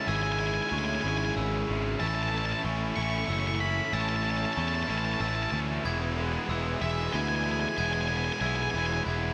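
In a slow, straight 6/8 sway, this euphoric, hopeful post-rock excerpt sets a dark, fuzzy octave-fuzz lead guitar melody with tape echo over a round, punchy fuzz bass up front, a bright hollow-body overdriven guitar riff alongside a tight distorted guitar riff in the background, a bell-like glockenspiel arpeggio with tape echo played with soft plastic mallets, and a very quiet, silky analog string pad, all moving from C#m7 to A at 2.0 seconds and Eadd9 at 5.8 seconds in a light reverb.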